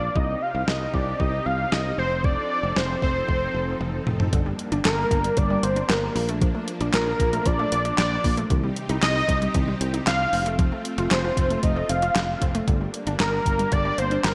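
A fat, detuned sawtooth lead sits up front with vibrato, a sub octave beneath it, chorus and digital delay, carrying the melody between Bb4 and F5 in this nocturnal, cool synth-pop piece in G minor at 115 BPM, cut from a longer work. Thumpy kick, fat snare, handclaps, hi-hat and toms from a clean 12-bit drum machine come in at 0.2 s, bathed in gated reverb, and a drum fill at 3.8 s leads into the second section. A growly, direct fretless electric bass sustains low notes underneath, while a vintage string machine voiced as violas holds slow-attack chords in the background with ensemble chorus. From 4.3 s a round analog pluck with a noise layer and short decay adds arpeggios in the background, treated with chorus and digital delay. Chords move from Cm and F7 to Gm, Bbmaj7, Cm, F and back to Gm, all set in a lush hall reverb with bright 1980s-style digital production.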